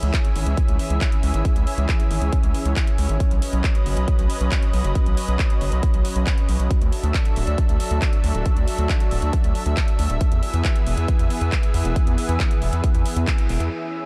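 Soaring and euphoric, this uplifting trance excerpt drives forward in a straight 4/4 over a C#m, Badd9, Dadd9, E progression, with a punchy, layered electronic kick sitting up front. A gritty, saturated synth bass built from sawtooth, square and sine tones with oscillator sync and resonance pumps against the kick alongside a lush, thick pad of detuned unison sawtooths with chorus and slow attack, while a big-room dance kit adds handclaps and metallic hi-hats. The dark, dry production holds everything close before a band accent lands at 13.3 seconds.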